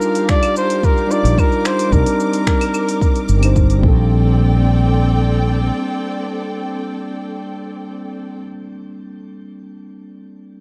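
A round, punchy fretless electric bass sits up front in this sunny, relaxed sunset chillout excerpt, playing from 1.2 s to 5.7 s beneath a veiled, bucket-muted trumpet melody with a soft attack and jazz-style vibrato. A clean, mellow tine electric piano carries the chords until 10.6 s, and both it and the trumpet are treated with tape echo and shimmer reverb, while a lush, bowed symphonic string section holds sustained chords in its own shimmer. A deep electronic kick and a tape-tinged house kit of claves, finger snaps, metallic hi-hat and shaker give the straight four-beat pulse a layered, produced feel within a dark overall production.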